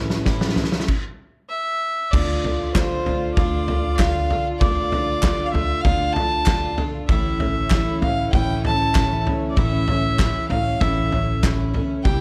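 The recording has a dark, warm production with light reverb and a sense of studio ambience. It is a bittersweet, stirring indie folk piece in D minor at 97 BPM in a straight 4/4, cut from a longer work. A roomy drum kit with a punchy kick and a fat snare opens with a fill and a brief stop during a short build-up over an A chord, and a nasal, reedy fiddle carries the melody from 1.5 seconds, bowed up front with plate reverb. At 2.1 seconds the harmony moves to D minor before returning to A. Beneath the fiddle, a shimmering, octave-doubled twelve-string guitar is picked, and a vintage-toned French horn with light vibrato plays a second line with plate reverb. A woody pizzicato upright bass thumps in the background, a very quiet sul tasto chamber string section holds soft sustained chords, and crisp, saturated group handclaps come in at 2.8 seconds.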